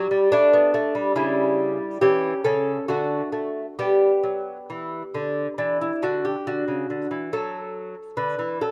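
Serene and radiant, this short classical fragment is a baroque-style dance in triple time for solo lute, played with a flexible, rubato feel. The fingerpicked lute sounds bright and delicate, its nylon double courses and some octave-doubled strings adding shimmer as it moves through chords such as G, C#dim and D. Captured outdoors and placed up front, the dry recording keeps the instrument close and intimate across the full 8.7 seconds.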